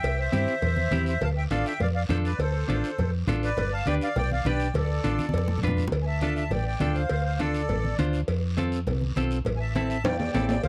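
A reedy, sweet accordion with a light tremolo tuning carries the melody up front in this danceable, fiery cumbia, taking over with a solo at 5.9 seconds for the rest of the passage. Beneath it, a dark, round fingered electric bass sits punchy and forward, while a twangy, picked clean electric guitar adds compressed accompaniment from 0.3 seconds. The percussion blends ringing cowbell and timbales with a raspy guiro and bright, low-tuned congas tucked into the background, and drum fills mark the turns around 5.2 and 10.1 seconds. Chords move through C, Dm, G, F and Am over a straight four-beat pulse. The dry, close sound of a small 1970s-style studio gives this short cut from a longer piece a vintage, intimate feel.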